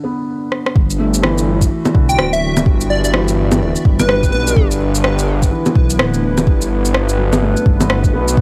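A soft, felt-muted upright piano opens this melancholic, wistful future garage excerpt with delay and sidechain pumping, joined at 0.5 seconds by an overdriven, up-front fill of electronic rim click, shaker and bongos, then at 0.8 seconds by a soft overdriven kick and a menacing, detuned saw bass with a filter swell, as a warbling, lo-fi pad drifts in the background under chorus and reverb and a punchy, bright unison lead carries a catchy delayed melody from 2.1 to 4.6 seconds over a swung groove.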